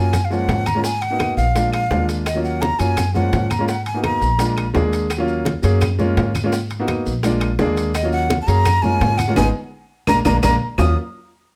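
Afro-Cuban jazz in Eb minor at a brisk 169 BPM, sultry and sophisticated, with a breathy, vibrato-laden flute up front carrying the melody through slapback echo and plate reverb, pausing at 4.7 seconds and returning at 8.0 seconds. A natural-sounding baby grand with short sustain comps through a cycling Gbmaj7, Abm9, Bb7, Ebm9 progression over a thumpy, dark pizzicato upright bass. Behind them sit tight high-tuned bongos, low-tuned congas, ringing metal-shell timbales, woody claves and distant grainy maracas, with a drum fill and band accent from 9.4 seconds closing this cut from a longer piece.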